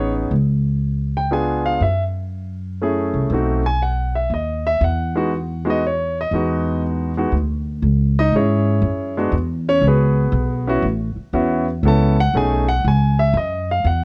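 A swung waltz at 120 BPM in 3/4, this warm, sophisticated jazz piano trio excerpt moves from E major into C# minor at 7.8 s, as a clear, intimate grand piano with audible action noise carries the melody over a woody, thumpy pizzicato upright bass, both up front in light reverb and coloured by the warbly pitch drift of worn old cassette tape, through chords such as C#7b9, Emaj7, A69 and B13.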